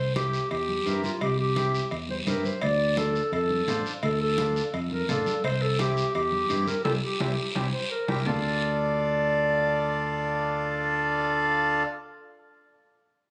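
Danceable and passionate, this cumbia fragment is cut from a longer piece and moves with a straight 4/4 feel. A mellow clarinet carries the melody up front with a soft attack and a classical style, beside a reedy, full and airy accordion and a fingered electric bass played direct and amped. Congas with thick skins and soft hands and ringing, metal-shelled cowbell and timbales sit in the background, while a raspy, saturated guiro adds its scrape to the percussion. The harmony moves between C and D minor. A band accent from 6.8 seconds leads into a drum fill that ends the percussion at 8.3 seconds, and from there clarinet, accordion and bass carry a new section alone, heard through a phone-recorded room sound with light reverb and compression.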